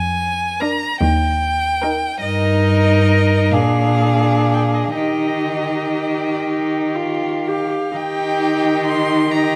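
Heard through close, detailed microphones with light reverb and vinyl crackle, this solemn, melancholic slow classical movement for string quartet unfolds in 6/8 with free rubato. A rich, focused violin carries the melody up front over a bowed cello bass with vibrato and a smooth top, and from 0.6 seconds a more distant second violin adds a second line while a clear, even viola supplies the accompaniment. Cut from a longer piece, the passage moves into a new section at 8.0 seconds.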